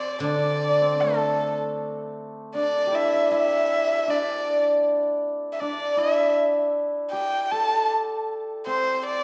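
Heard in a reverberant recital hall with a church-like bloom, this graceful, pastoral fragment of Chinese traditional chamber music moves in a free, rubato 4/4. Up front, a single erhu carries the melody with vibrato, portamento, a soft attack and an airy, intimate bow, while a mellow, shimmering hammered dulcimer plays a ringing second line throughout. A fingerpicked guzheng adds a brief, silvery accompaniment on D3 from 0.2 to 2.5 seconds.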